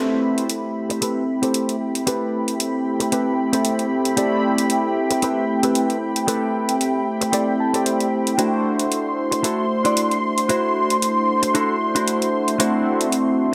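Bathed in a wet plate reverb, this bright, 1980s-style digital production is a groovy, sensual nu-disco excerpt at 114 BPM in A dorian, with a light swing on the sixteenths and a move from Am9 to D9 at 8.4 seconds. Up front, a round, brassy synth brass carries the accompaniment through chorus, cassette-tape coloring, delay and a filter sweep that runs throughout, while a thick, detuned unison pad holds sustained chords under chorus and phaser. A clean, direct-recorded electric guitar picks a compressed riff and adds a fill from 7.3 seconds, set over metallic, layered electronic hi-hats treated with gated reverb.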